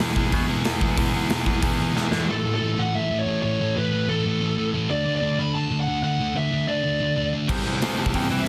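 A straight 4/4 punk rock beat tears along at 184 BPM, with a big, acoustic rock kit up front in a pumping room, its punchy kick and bright cymbals leading to a drum fill at 2.0 seconds. A dark, sludgy guitar riff runs through the whole excerpt, while brighter crunchy and double-tracked high-gain guitars sit in the background beside a forceful, vintage baritone saxophone on the bass line. The drums drop out at 2.2 seconds and these other parts fall away at 2.3 seconds for a warm lead guitar melody through a small cranked amp with delay, then all return at 7.5 seconds. The mood is upbeat and rowdy, with chords moving from E through A and D to C/E under light reverb and a dense, heavily limited modern master.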